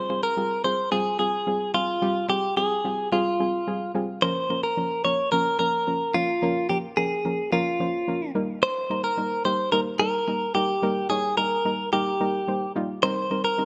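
A clean, twangy electric guitar carries the melody from the start, bright and up front with a delay trailing its picked lines, in a bittersweet yet energetic pop fragment in F minor at 109 BPM. A soft, round synth pluck joins at 0.1 seconds as accompaniment, dark and gently chorused, beneath chords moving from Fmadd9 to Bbm, Eb and finally Cm7 at 13.0 seconds. The whole passage sits in a lush hall reverb.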